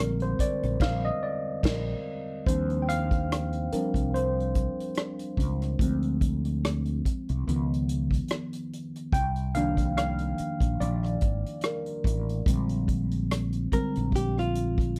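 A dry, close 1970s-style studio sound frames this soulful R&B and neo-soul cut in Eb major at 72 BPM with a swung 16th-note feel, where a worn, slightly out-of-tune tine electric piano played through a combo amp carries a chorus-soaked solo over rich chords like Ebmaj13 and Db9, a round fretless electric bass with lush chorus and an up-front acoustic drum kit played with bundle sticks, punchy kick and dark cymbals support it, and a picked, compressed hollow-body archtop guitar slips in at 13.7 seconds.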